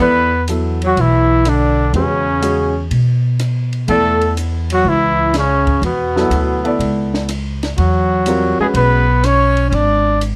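Trumpet, tenor saxophone, piano and upright bass open this searching, open modal jazz cut from a longer piece, swinging at 123 BPM in E mixolydian over E13 and Aadd9 chords, with a mellow, breathy trumpet up front carrying the melody, a gritty, growling tenor saxophone with scooped notes beneath it, short-sustained baby grand piano accompaniment until 9.0 s, a woody pizzicato upright bass up front, and a small, dark cocktail drum kit with a high-tuned snare and tight kick entering at 0.5 s, all in light reverb through close, detailed microphones.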